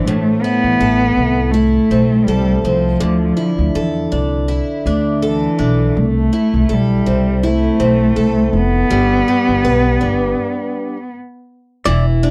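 Reflective and wistful, this short acoustic pop excerpt in A minor moves at 81 BPM with a light sixteenth-note swing, as a dark, bowed cello with vibrato carries the melody over a shimmering, octave-doubled picked twelve-string guitar and a thumpy pizzicato upright bass on gut strings, all up front in a dry, close 1970s-style studio sound with light reverb, through a stop at 10.4 seconds and a fleeting twangy flash from a direct-recorded clean electric guitar at 11.9 seconds.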